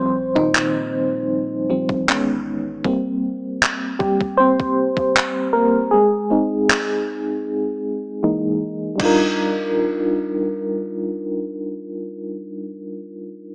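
A lightly swung sixteenth-note feel in 4/4 drives this tender, smooth contemporary R&B excerpt, cut from a longer piece and heard through a small-speaker sound with light reverb and digital ambience. Up front, a dark FM electric piano with tremolo, a noise layer and a low-pass filter takes a solo with a filter sweep through the first 9.0 seconds, moving through chords such as Eb69/Bb, Gmadd11 and Emaj7#11 before settling on Ebmaj9, while a deep, round 808-style bass sits in the background only until 2.8 seconds. A crisp, prominent 8-bit drum machine with a thumpy kick, handclaps and crash cymbal carries a tape-tinged, sampler-style character, leading into a break at 7.5 seconds.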